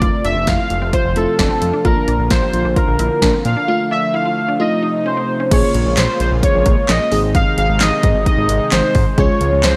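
Analog synth brass, bold and sawtooth-edged with chorus, leads up front in this melancholic, driving synth-pop excerpt at 131 BPM, over punchy analog drum machine kick, snare, handclaps, hi-hat and crash with gated reverb, a fat, detuned sawtooth bass, a lush, dreamy FM electric piano with a soft pad layer, a brassy analog pad holding sustained chords, and a juicy, squelchy blip pluck whose arpeggios stop at 5.5 s, where the harmony moves from F, Bb and Dm into Bb minor.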